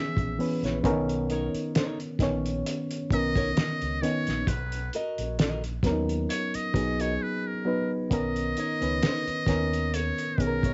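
A lightly swung, 66 BPM 4/4 groove from a muffled, cloth-damped drum kit with a fat snare and tight kick, plus a round, punchy fingered electric bass, carries this sensual, smooth neo-soul R&B excerpt in B major, where a reedy, slightly out-of-tune electric piano moves through C#m7, Bmaj9 and Bmaj7 under a buzzy, breathy metal-muted trumpet solo with light vibrato that runs until a silent gap at 7.2 s before the next section at 8.1 s, a bright fingerpicked nylon-string guitar joins on the second line at 0.6 s, and cassette-tape grain with light reverb gives the home recording a top rolled off above 7.8 kHz.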